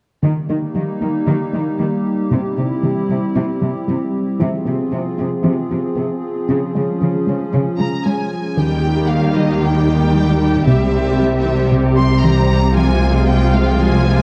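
Futuristic and relentless, this cinematic hybrid of orchestral and electronic scoring moves at 115 BPM in 4/4. A hollow, airy pad with chorus holds sustained chords, a punchy, detuned sawtooth pluck runs arpeggios, and a dark, woody cello section carries the bass over chords of Eb, C, Fm/C and Db. A lush violin section takes the melody at 7.8 s, and at 8.6 s a distant viola section adds accompaniment while a rich, up-front double bass section deepens the low end, all in a moderate scoring-stage reverb and colored by worn, warbling cassette tape with a wavering pitch drift.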